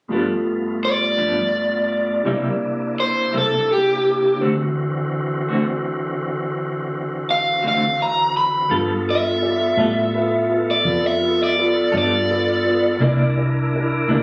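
A clean electric guitar with tremolo, a dark, mellow concert grand piano with deep bass, and a bright, reedy tonewheel organ open this laid-back, gritty slow blues at 56 BPM in a straight 12/8. The organ holds sustained chords through a slow rotary speaker with light overdrive and chorus vibrato, while the fingered, up-front guitar and the piano fill out the accompaniment over G7, C7 and D7. At 0.8 s a raw garage guitar takes the melody, dark, picked and overdriven, sitting prominently in front of the band. At 8.7 s the music settles into G mixolydian on a G9 chord, and a vintage foam-muted fingered bass joins with a round, punchy, amped tone, moving to C9 near the close. The sound is that of a phone capturing the room, with a touch of studio reverb, and the passage is cut from a longer piece.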